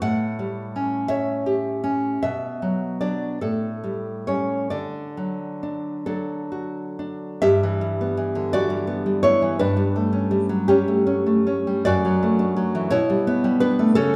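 A lone nylon-string guitar, fingerpicked and full-bodied with a deep classical tone, sits up front in this tender romantic solo piece in D major, moving in a rubato 6/8 at roughly 41-59 BPM in dotted quarters. It opens on A7 and settles onto D by 4.7 seconds, then a second section from 7.4 seconds travels through Em/G and A7/G before reaching G/B. A moderate reverb of a church or concert hall, about 1.6 seconds long, surrounds the guitar in this short passage cut from a longer work.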